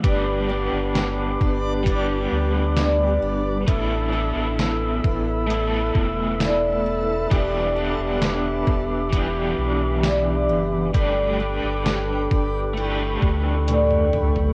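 A worn, warbling cassette sheen with light digital ambience and drifting pitch wraps this floating, blissful dream pop fragment, cut from a longer piece and moving in a slow, straight 4/4. Up front, a detuned 8-bit drum machine thumps out kick, snare, hi-hat, tambourine and toms with a sampler-style, small-room character, closing on a drum fill from 13.7 seconds, while a deep sine-and-triangle sub bass doubled at the octave holds the low end. A crunchy, overdriven electric guitar plays bright accompaniment through tremolo and analog chorus, and a soft, flute-like tonewheel organ sustains mellow chords with percussive attack and a slow rotary speaker. Further back, a woody, boxy twelve-string acoustic picks shimmering arpeggios with subtle chorus and tape echo. From 0.9 to 11.4 seconds, a faint, reversed granular texture swells dreamily beneath, bathed in its own reverb and echo, as the harmony moves through G, Asus2, Em7 and Gadd9.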